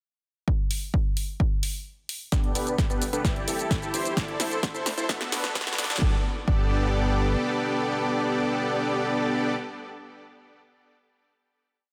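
A huge, detuned supersaw carries this triumphant, anthemic festival progressive house piece in G major at 130 BPM, entering at 2.3 seconds with pulsing gated chords that ride sidechain pumping, a filter sweep and digital delay through a build over Gadd9, C, Dsus2 and Bm7 before landing on a final Gadd9 chord that rings out to the close. Underneath, an up-front electronic kick holds a four-on-the-floor pulse from 0.5 seconds, joined by a big-room dance kit with a punchy snare backbeat, open and closed hi-hats and shaker, which drives a drum fill through the build-up. A brief break just before 2.3 seconds clears the way for the synth's arrival. A fat analog bass sits in the background with a driving eighth-note line, pumping with the sidechain beneath the chords. A lush hall reverb surrounds the mix, and the dense, heavily limited modern master gives the whole piece a polished festival sheen.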